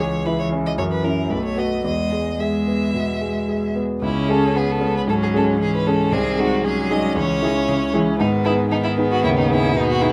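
A quick, cheerful classical-period movement for piano quartet opens in E major at 115 BPM in 4/4 with rubato. A clear, distant violin carries the melody with vibrato over a smooth, even cello line, while an up-front concert grand with deep bass and long sustain supplies the accompaniment. At 4.0 seconds the music turns to C# minor and a second violin, rich and focused, joins with its own bowed line, keeping the spirited mood alive under a light reverb in this short cut from a longer piece.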